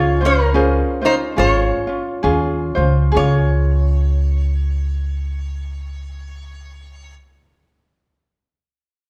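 A moderate recital-hall reverb gives this short fragment of languid, relaxed Hawaiian music the airy bloom of a church or concert hall, with a gentle swing that slows down over its first 3.1 seconds. Up front, a lap resonator guitar carries the melody with fingerpicks and slide, its tone metallic and nasal, while a light, fingerpicked ukulele supplies accompaniment. A pizzicato upright bass on gut strings adds a woody, dark, thumpy foundation, and the harmony settles from Dbmaj7 onto Db at 3.1 seconds.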